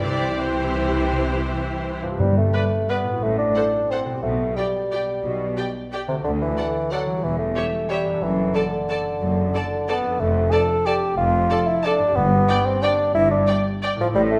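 This sweeping, elegant classical passage in G major opens with distant, clear violin sections carrying the melody and a second line over a lush viola accompaniment with expressive portamento, while a ringing, thumb-plucked concert harp plays arpeggios in the background and rich cello and double bass sections hold the bass. Moving in a rubato 3/4 at roughly 157-198 BPM, it gains a warm, up-front solo bassoon at 2.0 s, and very quiet timpani sound briefly at 2.2 s and again at 12.2 s. A wet recital hall reverb lends the ensemble a spacious glow.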